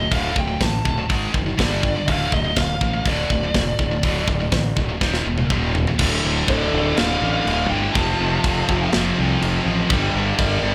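A bright, double-tracked high-gain guitar riff drives this relentless, aggressive heavy metal excerpt at 123 BPM in D phrygian, up front with a round fuzz bass and a tight metal drum kit with a medium-tuned snare, while a dark lead guitar through a small cranked amp carries the melody with slapback echo. After a drum fill at 5.0 seconds, the groove drops to half time at 6.0 seconds, where a compressed overdriven rhythm guitar joins in the background and a bluesy distorted lead adds a faint second line from 6.5 seconds. There is little reverb overall, and the sound is that of a live gig heard through the venue's PA, with a touch of club ambience.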